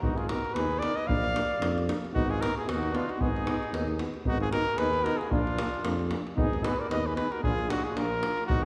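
Bittersweet yet fiery, this Balkan brass band excerpt moves at 114 BPM in a swung 2/4, set in Ab dorian with a raised fourth and cut from a longer piece. A punchy cornet with light vibrato carries the melody up front, while a flugelhorn with a smooth top plays a second line further back. Two euphoniums fill in the accompaniment in the background, one with a vintage character and the other with a soft attack and gentle vibrato, as a mellow tuba anchors the bass. A tight, band-limited davul sits up front, giving the groove its bite. The harmony rocks between Abm and Bb across two matching phrases, and the whole ensemble rings out in a concert hall reverb that lends the brass a spacious glow.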